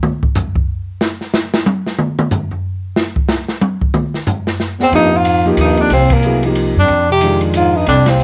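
An open jazz drum kit plays alone first, its boomy kick, medium-tuned snare, toms, hi-hat and dark cymbals sounding airy and up front in a small room, before the band enters near 4.9 s on an Fm9 chord in F dorian. This intense, hypnotic modal jazz swings in 3/4 at 184 BPM: a mellow, distant tenor saxophone carries the melody with vibrato and a soft attack, a bright bass clarinet adds a scooped second line in the background, a warm upright piano with long sustain accompanies, and a woody pizzicato upright bass holds the low end, with band accents at 6.1 and 8.0 s. The drums, horns and piano carry a cassette-tape grain from a home recording under light reverb, and the clip is cut from a longer piece.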